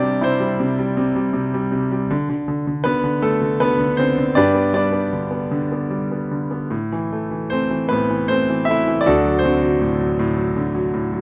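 In an unhurried, rubato 3/4 at 79 BPM, a clear, smooth concert grand piano plays alone throughout this wistful, melancholic classical excerpt, its deep bass and vintage character placed up front by close, detailed microphones in light reverb as the lyrical line moves through C, D5, G, Am and D, stretching from D2 to E5 over 11.2 seconds.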